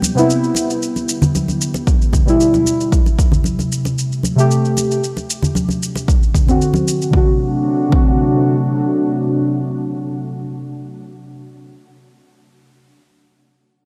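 A punchy, overdriven electronic kick drum enters at 1.9 seconds beneath a deep, dark chord stab with chorus, delay and sidechain pumping, a warbling, nostalgic tape-like pad, bright close congas and a layered shaker in this warm, earthy organic downtempo excerpt at 114 BPM in D mixolydian, moving through Cmaj7, G6, Am7 and D7 in a light digital ambience.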